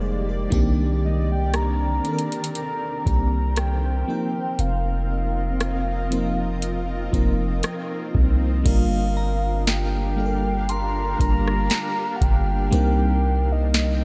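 Contemporary R&B at a slow 59 BPM in 4/4 with a light swing on the sixteenths, this excerpt carries a sensual, moody atmosphere. An FM electric piano layered with a soft pad supplies lush, dreamy chords coloured by chorus and tremolo, while a granular cloud pad adds blurred, evolving sustained harmony beneath a digital ambience. A long, sine-toned 808-style bass sits up front with a deep, mellow decay, and at 0.5 seconds a booming analog drum machine enters dry and forward, with a deep kick, crisp snare, rim click, metallic hi-hats and crash cymbal. From 1.1 seconds a soft octave-layered synth lead carries the melody, round and full with vibrato, phaser and a diffuse ambient delay. The harmony moves from Fm11 through Cm9 and F7sus4, then into Gm7 and Cm7 as the second section begins at 8.7 seconds, and from 9.2 seconds a crystalline synth bell briefly glints in the background.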